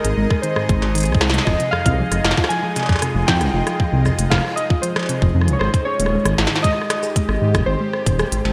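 IDM at 116 BPM in F minor, eerie and melancholic and cut from a longer piece: warbling lo-fi synth keys with chorus and delay carry the melody over a smooth, airy analog pad that moves through Ab, Fm7 and Abmaj7 with chorus and phaser, while a round, tine-like FM pluck with digital delay plays arpeggios in the background and a deep, rumbling detuned saw bass sits up front; an industrial drum kit of crisp hats, rim click, shaker, clanging snare and struck metal under gated reverb runs alongside a tight electronic kick heard from 0.3 to 8.2 seconds, and the whole mix is set in a lush hall reverb with bright 1980s-style digital production.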